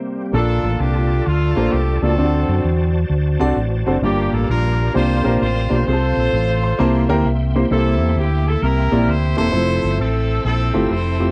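Gospel in a swung 4/4, this brief excerpt cut from a longer piece carries a reverent, soulful mood. A concert grand piano with an intimate tone, deep bass and audible action noise opens with a short break before settling into accompaniment, and it steps forward with a fill at 6.3 seconds. Behind it, a reedy tonewheel organ holds sustained chords in the background, its key click, chorus vibrato and fast rotary speaker adding shimmer. At 0.3 seconds a horn section enters with the melody, clear and roomy with light vibrato and a pop-style ensemble sound, set at a distance, while a fingered electric bass arrives at the same moment, round, punchy and up front. The harmony moves through Bbmaj7, D7, Gm7 and C9sus4 to F, then C7 and Fmaj7, all captured in a dry, close 1970s-style studio recording with small room ambience.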